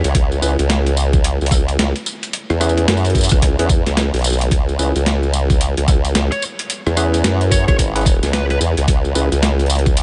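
Lightly reverberant and dulled at the top, this funky, playful glitch hop excerpt swings on a knocking, overdriven electronic kick up front and a gritty, sampler-style boom bap kit of hi-hat, rim click, snare and tambourine, under a saturated, chorused formant-sweep wobble bass, barky electric piano stabs pumping with tape echo in the background over a C#m7 chord, and a dark, smooth overdriven lead guitar melody that surfaces briefly from 6.3 to 8.6 seconds.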